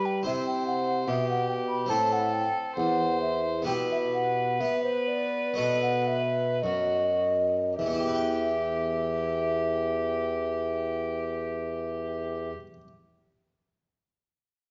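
In a rubato 4/4 at roughly 51-75 BPM, this grave, flowing baroque-style sonata movement in E minor slows through its opening 7.8 seconds as the harmony moves from C through Am, Em/B and B7 before settling on Em. A nasal, gut-strung violin carries the melody from a distance, while a hollow, airy wooden baroque flute sings a second line above it. A punchy, up-front bassoon supplies the bass, and a brilliant, full-bodied harpsichord plucks the continuo, ringing on alone until 12.9 seconds, all within a wet recital-hall reverb that surrounds this dark, period-style fragment cut from a longer piece.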